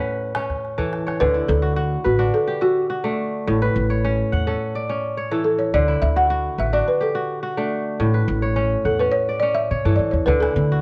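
A round, dark balafon carries the melody over crisp, ringing fingerpicked kora arpeggios in this hypnotic, flowing slice of West African string and xylophone music at 106 BPM in D major, drifting between D and A. A deep calabash fill at 0.8 seconds leads into a balafon solo from 1.2 seconds, where a thumpy pizzicato upright bass with steel strings joins up front. Light reverb and the warbly pitch drift of worn old cassette tape color the recording.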